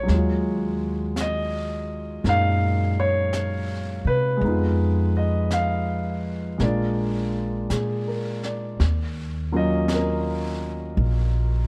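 A concert grand piano with deep bass and an open, up-front sound plays alongside a woody, thumpy pizzicato upright bass from the first moment, setting a wistful, smoky jazz ballad in E-flat minor at a slow 55 BPM with a swung feel. Soft brushes on a dark, smooth drum kit with a high-tuned snare and hi-hat sit well back in a small room, while the harmony moves from Ebm11 through Fm7b5 and Bb7 before settling on Ebm9 at 8.8 seconds. The dark production carries light reverb, and the passage is cut from a longer piece.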